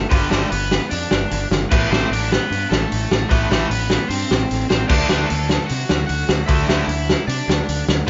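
Opening at once with a crunchy overdriven guitar melody over a fuzzy, punchy picked bass up front, this angry, raw punk rock excerpt adds a bright distorted riff guitar sitting in the background, a tight distorted guitar playing its own riff in the same register, and a loose, gritty indie drum kit with a punchy kick, crash and hi-hat, all moving through G, Am and D in a lightly reverberant room with a rolled-off, live-band sound.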